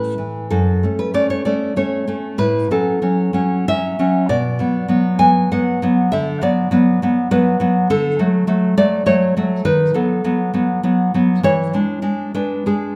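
Warm and sunny, this romantic piece for solo classical guitar moves in triple time with a supple, rubato feel. The nylon-string guitar is fingerpicked and sits up front, its full-bodied, deep classical tone spanning F#2 to G#5, with finger squeak audible. A wet recital hall reverb gives each phrase a 1.6-second tail. The harmony travels from F#m through Bm and D, arriving at B7/D# and then E7 at 11.4 seconds before this section, cut from a longer piece, stops at 13.0 seconds. The instrument is tuned to A4 = 435 Hz.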